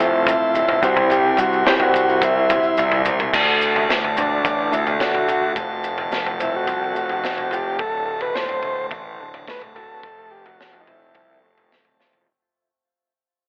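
A straight 4/4 groove from a crunchy breakbeat drum kit carries this hypnotic, hazy psychedelic rock passage, cut from a longer piece, with the saturated, gritty kit entering at 0.3 seconds: a tight kick, medium-tuned snare, toms and dark cymbals, all sitting up front with a rolled-off top. Beneath it, a fuzz-drenched picked electric bass adds a round, punchy low end, while a dark, clean, fingered electric guitar plays a riff through tremolo and dub echo. A vintage, reedy combo organ carries the melody up front with heavy vibrato, overdrive and dub echo, and from 3.3 seconds it takes a solo as the whole passage begins to fade out. Behind them, a piping, scooped tonewheel organ holds sustained chords with key click, light overdrive and a stopped rotary speaker, and grainy, band-limited maracas shake in the background until 7.6 seconds. The harmony moves among F, C and D, and a drum fill at 12.0 seconds closes the fading passage inside an echo-heavy, telephone-filtered mix with light studio reverb.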